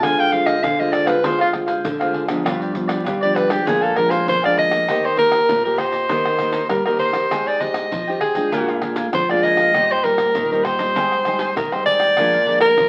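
This excerpt sounds like a very old 78 rpm record, with vinyl crackle over a wet studio reverb, and carries a joyful, sunny samba and choro feel at 99 BPM, settling into Eb major from 4.9 s. A bright, close-miked soprano saxophone leads up front in jazz style, featured as a solo through the opening 4.9 s, with vibrato, subtone and scooped notes. Beneath it a crisp, picked cavaquinho and two fingerpicked nylon-string guitars, one a deep classical accompaniment in the background with audible finger squeak and the other carrying the bass, sit with a close, dry percussion group of tube shaker, tight surdo, pandeiro and tamborim, moving through chords such as Dm7b5, G7, Eb6 and Abmaj7.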